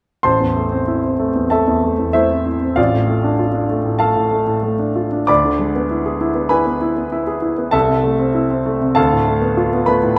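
Passionate and agitated, this brief classical excerpt of a virtuoso piano study features a solo grand piano, clear and intimate with audible action noise and an up-front presence, ranging from A1 to D6 in a rubato 4/4 over chords moving from Am through Dm/A, E7/D and Am/C to Bm7b5/D, all set in a wet, large studio reverb.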